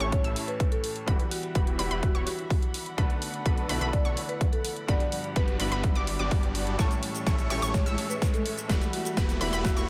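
Festival progressive house at 126 BPM in a straight 4/4, this powerful, emotional build-up is cut from a longer piece and moves through A, Emadd9, Bm7 and Gmaj7. An up-front, punchy electronic kick anchors the groove, joined by a big-room dance kit of hi-hat, shaker and a huge snare in a small room ambience, with a drum fill arriving at 6.8 seconds. A thick, saturated detuned saw bass with chorus sits in the background alongside huge, lush supersaw chords whose riff carries phaser, delay and a low-pass filter sweep across the whole passage, while a bright unison pluck spins delayed arpeggios high above. A clear, intimate baby grand piano with audible action noise plays accompaniment, and a woody, close-miked marimba with medium mallets carries the melody with delay. Muted, veiled strings played con sordino hold very quiet sustained chords, an electronic riser enters at 2.4 seconds, and the piano, pluck, supersaws and bass all pump with the sidechain under a light reverb.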